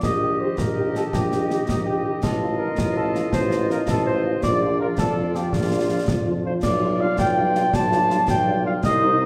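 A rousing, proud military-style march for wind band opens at once with a dark, distant-sounding solo cornet carrying the melody up front with light vibrato. A clear woodwind section plays a tight second line, and a vintage-toned solo tuba holds the bass. A close, dry battery of concert snare drum, concert bass drum and clash cymbals drives the 6/8 pulse at 109 BPM in dotted quarters, and a very quiet, mellow French horn section joins with accompaniment at 0.2 seconds. The harmony moves from Eb/Bb through F7/A and Bb to G7/B, the band tuned to A4 = 439 Hz. The playing is in a classical style throughout, set in a recital hall or church whose reverb lingers for about 1.5 seconds, and this short passage is cut from a longer piece.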